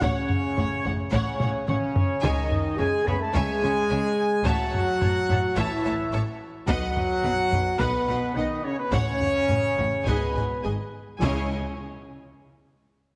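A relentless, epic orchestral film cue in C# minor at 108 BPM opens at once with a close, dry taiko ensemble struck with hard sticks, punchy, mellow French horns and warm trombones holding sustained chords, and clear trumpet stabs up front, with a drum fill at 1.4 seconds. Lush bowed strings with vibrato fill the background: a distant, smooth violin section carries the melody over a bright, focused second violin line, rich violas accompany, and cellos and a far-off double bass section anchor the bass. The harmony moves through F#m/A, A, B and G#m before landing on C#m at 11.2 seconds, and the taiko carries on alone to 12.3 seconds in this cut from a longer piece, the whole mix heavily compressed and set in a moderate scoring-stage reverb.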